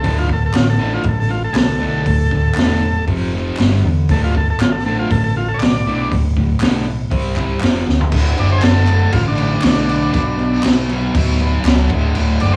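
A bright, double-tracked fuzz guitar riff anchors this raw, swaggering garage rock excerpt at 119 BPM, driven by a gritty, saturated drum kit with a high-tuned snare and a drum fill at 7.9 seconds, a dark, round picked electric bass, a buzzy vintage combo organ melody with light vibrato and plate reverb, and hollow group handclaps entering at 0.5 seconds in the background, all captured as a home cassette recording with small room ambience.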